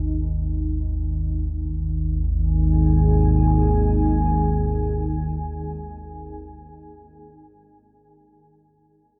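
Ambient music in free time, vast and ominous, this brief cut from a longer piece sets a deep, rumbling, wave-folded drone under a moody, warbling, detuned pad of sustained chords with chorus, both up front and sinking into a huge, echoing space with a long reverb tail, the pad lingering to 6.7 seconds after the drone stops at 6.4.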